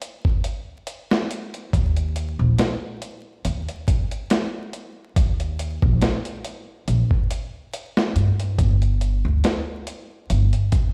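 A woody, pizzicato upright bass with tube saturation enters up front at 1.7 s over a gritty, overdriven sampler-style drum kit of thumpy kick, medium-tuned snare and hi-hat in this hypnotic, dark trip hop excerpt, cut from a longer piece and heard as if played on a big sound system in a bare stone room with vinyl crackle.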